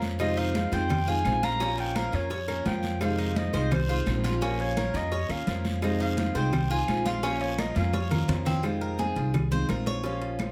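A mellow, subtoned clarinet with light vibrato and scooped notes carries the jazz-tinged melody in this danceable, warm excerpt of Cuban son and guajira, moving over a repeating Fm7 to Bbm vamp. A growly, thumpy upright bass sits up front, joined by thick-skinned congas and a picked steel-string acoustic guitar. A raspy guiro, woody claves and a tight, high-tuned cowbell stay in the background, while a metallic, double-strung Cuban tres plays arpeggios. After a drum fill from 7.8 s, the tres takes a solo from 8.6 s in a moderately reverberant studio space.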